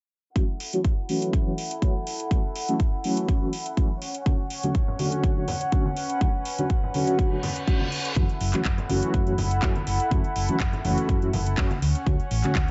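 A muffled, filtered mix with digital ambience and nothing above 7.8 kHz frames this nostalgic, sensual slice of disco house at 123 BPM in F# minor. It has a lightly swung 16th feel and moves between F#m7 and Dmaj7. From the start, a punchy, tape-warm electronic kick sits up front beside a house kit of handclaps and metallic hats, while detuned sawtooth synth brass with chorus, tremolo and a moving notch pumps under the sidechain, and a reedy, gut-toned violin section holds dark sustained chords through 12-bit sampler grit, both passing through filter sweeps. Soft-handed congas and tambourine join in the background at 4.3 seconds, and a reverse cymbal leads into 8.2 seconds, where a round, hollow-body fingered electric bass enters.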